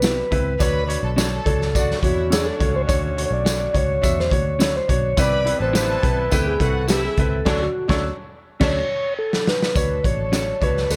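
Joyful and uplifting, this uptempo 1960s-style soul excerpt features a soft, flute-like tonewheel organ carrying the melody through a slow rotary speaker, leading as a solo until 9.8 seconds. Beneath it, a gritty, saturated garage drum kit with dark cymbals and a punchy kick sits up front alongside a round, foam-muted bass, a brilliant baby grand piano, jingly tambourine and phased electric guitar stabs tucked in the background. A smooth-topped horn section doubling in octaves plays a second line until 8.8 seconds, while a focused, distant violin section joins at 0.6 seconds, and a band accent and drum fill close out the passage before a brief new section begins, all in a light reverb.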